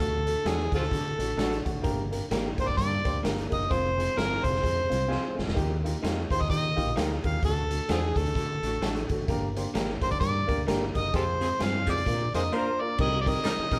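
An overdriven, gritty harmonica leads this danceable, uptempo 1960s-style soul excerpt at 129 BPM, sitting up front with tongue slaps, scooped notes and light vibrato over a swung 4/4 groove. A woody upright piano with short sustain adds a fill near 1.1 seconds, a round fretless bass anchors the low end, a punchy, saturated garage drum kit with a rolled-off top plays a fill around 5.1 seconds, and a slightly broken-up guitar through a small old amp adds lo-fi stabs in the background. A clear horn section with vibrato and octave doubling joins at 11.4 seconds during the closing band accent, and the live-in-one-room performance sits in a large studio reverb.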